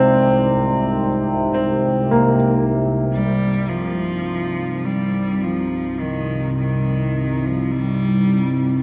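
Drenched in a vast cathedral reverb, this cavernous, unsettling dark ambient drone excerpt in C minor moves at 52 BPM: an overtone-sweeping drone with moving overtones and chorus sits up front, while a detuned, wave-folded analog pad holds sustained chords in the background. A mellow, intimate grand piano with audible action noise and delay plays arpeggios throughout, and a pure, ringing quartz singing bowl is barely audible until 3.1 seconds. From that point a single bowed cello carries the melody with rich, smooth vibrato and delay as the harmony settles onto C minor.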